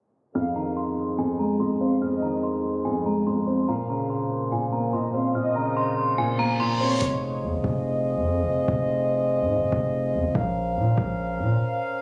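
Captured on a phone in a small room, the recording has a compressed, dulled sound, with club reverb hanging around it. This dark, menacing hip hop fragment in F minor moves at 144 BPM with a half-time feel, cycling between Fm7 and Bbmadd9. A mellow French horn section sustains distant chords with light vibrato throughout. From 0.4 seconds a metallic, inharmonic FM bell rings out the melody through chorus and analog delay, over a lush bowed violin section playing a second line and a felt-muted upright piano whose soft accompaniment carries audible action noise under a low-pass filter, all while a filter sweep runs through the opening. An electronic reverse cymbal enters at 6.3 seconds. At 7.0 seconds the bell, strings and piano drop away, and a punchy, heavy 808-style bass, a sine tone with a noise layer, hits hard up front beneath the horns.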